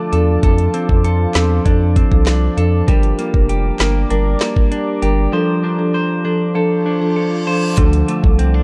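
Dancehall at 98 BPM with a bouncy, hypnotic feel, cut from a longer piece: an up-front island pop drum kit with gritty 12-bit sampler character sets a knocking kick, woody snare, metallic hats and handclaps over a round, nasal analog bass, while mellow soft-mallet marimba, a clean, compressed electric guitar playing delayed arpeggios, and a deep, moody sawtooth pad with chorus and sidechain pumping move through F6, Gm and Dm in a dry, dark mix, and a reverse cymbal sounds from 6.8 to 7.8 seconds.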